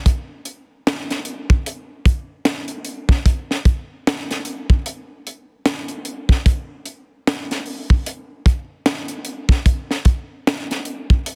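A dense, heavily limited modern master with light reverb frames this short, smooth and relaxed R&B excerpt, built entirely on an acoustic funk drum kit that plays from 0.1 to 11.4 seconds. The kit sits dry and up front, with a high-tuned snare, a tight kick, hi-hat and finger snaps riding a swung sixteenth-note feel in 4/4.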